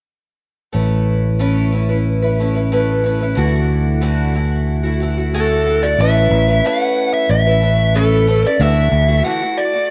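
Folk rock with a heartland lean, this warm, nostalgic fragment sets a bright, shimmering picked twelve-string acoustic guitar, with audible finger squeak, over a punchy fingered electric bass through Aadd9 and Dadd9 chords, joined at 5.3 seconds by a dark, smooth overdriven lead guitar carrying the melody, all bathed in a lush hall reverb with a rough home-demo feel.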